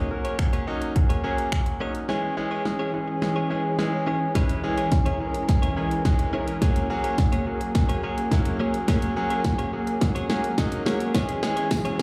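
A straight pulse drives this confident, energetic dance-pop excerpt, carried by an up-front electronic drum kit with a punchy kick, a fat snare, hi-hat and finger snaps, all tape-warm and layered. A clear concert grand piano plays polished accompaniment chords between F#add9 and C#m, intimate and present with audible action noise, deep bass, long sustain, sidechain pumping and a slapback echo. Alongside it, a bright, twangy clean electric guitar, recorded direct and compressed, picks a riff with subtle chorus and its own slapback echo. At 2.8 seconds a silky vintage string machine enters behind them with slow-attack sustained chords, its warbling ensemble chorus and sidechain pumping sitting in the background. Soon after the opening the passage turns into a build-up over a running drum fill, and near the end a very quiet, jingly tambourine joins at 11.1 seconds before a faint electronic riser appears at 11.8 seconds. 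The whole thing sounds like a live gig heard through a venue's PA, with light club reverb and a thinned low end.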